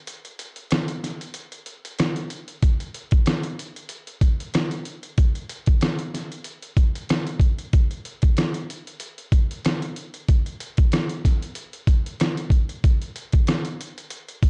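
Moody and reflective, this hip hop excerpt moves at 94 BPM in 4/4 with a lazy sixteenth-note swing, carried entirely by a dusty soul sampler-style drum kit that enters at 0.1 seconds and runs to 14.5 seconds. Up front and compressed, the kit pairs a thumpy kick and fat snare with hi-hat and rim click, all coated in vintage 12-bit sampler grit and re-recorded in a large room. The production is dark with light reverb, and a break opens the piece before 2.6 seconds.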